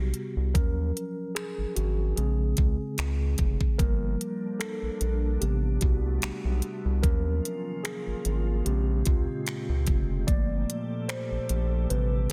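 Sensual and longing, this contemporary R&B excerpt moves at an unhurried 74 BPM in 4/4, with a light swing on the sixteenths and tuning set slightly above standard pitch. A mellow tine electric piano carries the lead from the first moment, its clean tone heard through built-in speakers as it drifts over rich ninth chords such as Am9, Ebm9, Bbm9 and Gm9. Beneath it, a round analog bass sits up front, deep and saturated, blending square and sine waves with a wave-folded edge that keeps its sustained notes evolving. The trap drum kit supplies finger snaps, crisp hi-hats and a knocking kick, with soft clipping giving the snare a slight grit. At 4.1 seconds a glassy FM pad arrives with a slow attack and long release, its ethereal chords treated with ensemble chorus, bathed in its own reverb and pumping against the sidechain. The overall sound is dry, dense and heavily limited in a modern master.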